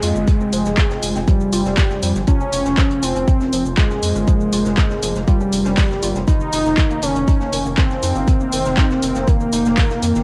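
A fat, detuned sawtooth lead sits up front in this cinematic, driving melodic techno excerpt, carrying the melody with a mellow tone, vibrato, a filter sweep, analog delay and a sub octave beneath it. A punchy, layered electronic kick hits hard in the foreground, joined by an analog drum machine's handclaps, hi-hat and shaker and by a very quiet, dry acoustic soul kit adding hi-hat and snare with a rolled-off top. A gritty, saturated synth bass built on oscillator sync anchors the low end, while a woody, wave-folded pluck plays arpeggios in the background through ensemble chorus and tape echo. A deep, moody ambient pad holds sustained chords with a slow attack, chorus and its own reverb. A very quiet downlifter sweeps through the opening, and from 2.3 s an eerie, inharmonic FM bell adds a warbling second line with phaser. Sidechain pumping makes the lead, pad, pluck, bass and drum-machine percussion breathe in rhythm, and cassette tape coloring with light reverb gives the whole home-recorded mix a vintage haze.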